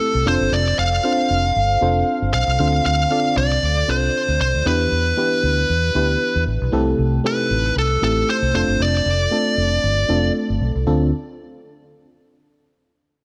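A lightly swung 16th-note groove at 116 BPM in 4/4 drives this dramatic, nostalgic 1980s-style pop excerpt in D dorian, where a fuzzy, compressed lead guitar with distortion and delay carries the up-front melody, a mellow FM electric piano with chorus adds soft, warbling accompaniment, and a dark, foam-muted fingered electric bass gives a round, punchy low end, all in light reverb over chords moving from F6 through Dm7, Em7 and C6 and back to F6 before a new section opens on Dm7 at 10.9 seconds.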